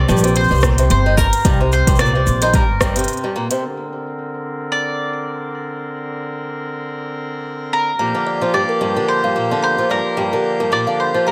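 Pastoral and delicate, this folktronica excerpt in Bb major at 110 BPM with a light 16th swing sets a bright, gritty mandolin melody with delay over a thumpy pizzicato upright bass, a shimmering fingerpicked twelve-string acoustic guitar, overdriven organic electronic drums of smooth hi-hat, rim click and shaker, and a deep overdriven electronic kick; the bass, guitar and drums fall away around a brief break at 3.1 seconds, then a reedy, close-miked accordion enters under a filter sweep, and a ringing, woody kalimba with tape echo arrives alongside the returning guitar at 8.0 seconds.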